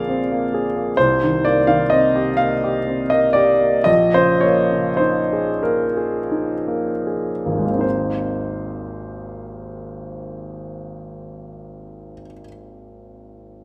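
A clear grand piano sits up front in a moderate recital hall, its long sustain blooming into a reverb tail of about 1.3 seconds while the noise of the action stays audible up close. This is a serene, luminous piece of impressionist classical solo piano in A-flat major, cut from a longer work and tuned to A4 = 439 Hz. The rubato pulse in 6/8 drifts between 25 and 46 BPM in dotted quarters, and the playing slows through the opening passage before a new section begins at 7.8 seconds. The harmony moves from Bb9 to Cm7 and Bbm7, then settles on a glowing Abadd9 as the second section opens. The single instrument spans a range from Ab1 up to F5, and its intimate, polished tone carries the whole 13.6 seconds alone.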